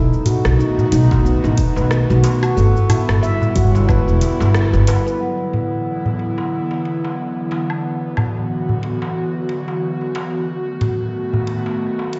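Heard through a big sound system in a bare stone room with muffled highs and a moderate hall reverb, this earthy, hypnotic organic downtempo excerpt in E minor moves at 91 BPM with a swung 16th feel. A breathy, warbling pad with chorus and sidechain pumping holds sustained chords over meditative handpan arpeggios with digital delay and a woody pizzicato upright bass, both of which drop out by 5.2 seconds. Meanwhile a low-pass-filtered afro-pop kit of metallic hats, rim click, shaker and woodblock plays alongside a crisp, deep darbuka under soft hands, a tape-warm electronic kick adds weight early on, and from 5.2 seconds a felt-mallet bronze singing bowl with slow beating sits in the background while a filter sweep runs over the drums.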